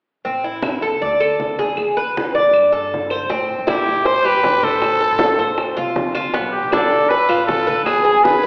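A straight 4/4 pulse at 158 BPM drives this short cut from a longer Cuban son and guajira piece in A minor, nostalgic and sultry in mood. Soft-handed, low-tuned congas with a thick skin sit at a distance in a large room, joined from 0.6 s by woody claves in the background, while a dark, growly upright bass plucks thumpy pizzicato lines underneath. Up front, a mellow, picked Cuban tres spins arpeggios on its metallic double strings, some doubled at the octave, through Am, D5, E7 and Gsus2. At 3.3 s the harmony moves to Am7, Am, Bdim and E, and round, hard-handed bongos come in behind. From 3.7 s a brilliant, raspy growling trumpet takes a close-miked solo in a pop style, with vibrato and scooped notes. A heavy scoring-stage reverb and a lo-fi AM radio tone give the whole piece the feel of a church or concert hall heard over the radio.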